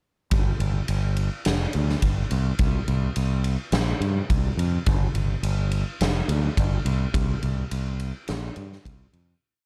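A dark, warm production with little reverb frames this short, melancholic and hazy rock piece drawn from shoegaze and dream pop, moving in a straight 4/4. A growling, overdriven fingered electric bass sits up front with a bright, amped edge, driving eighth notes in its low register. Beside it, a huge acoustic arena drum kit with a punchy kick, medium-tuned snare and ride cymbal carries a half-time big groove before the whole thing fades out from 7.1 seconds.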